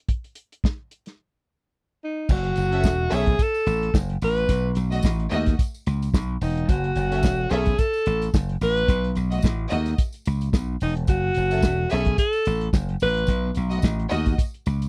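Disco at 109 BPM in F# dorian with a sultry, driving swing, where a dry, dark soul drum kit opens alone with a break at 1.2 seconds before a breathy, whispered alto saxophone melody enters at 2.0 seconds, joined by punchy slap bass, a jingly tambourine in the background and a lush, woody string section bowing sul tasto with vibrato over alternating F#m7 and B9 chords in a dry, close 1970s-style studio sound.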